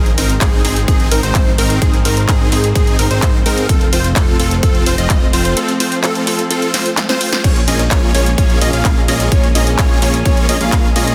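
This powerful, euphoric stretch of festival progressive house, cut from a longer piece, opens with dark, woody bowed strings holding chords in the background, a detuned square-wave pluck lead spinning arpeggios through subtle chorus and dub echo, huge, bright supersaw chords playing a riff, and a fat, saturated analog bass, each pumping with sidechain. A layered dance kit of snare, handclaps, hi-hat and crash enters at 0.1 seconds, and a punchy, up-front electronic kick joins at 0.4 seconds. The kit plays a fill from 6.7 to 7.4 seconds as the harmony moves from Ab through F to Bbm7. The dense, heavily limited master keeps the mix loud, with studio reverb on the drums and a light room ambience overall.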